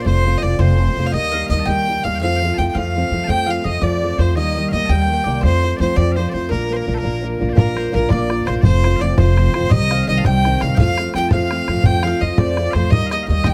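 Driving, dark and lively, this Celtic folk jig in 6/8 at 112 BPM, cut from a longer piece, sets a clear, biting fiddle melody with light vibrato over a full-bodied picked steel-string acoustic guitar with finger squeak and a woody, thumpy pizzicato upright bass, both up front, while a very quiet bowl-back mandolin and bright, piercing bagpipes in the background carry second lines and a tight, damped bodhran joins at 7.6 s, heard through close, detailed microphones with little reverb.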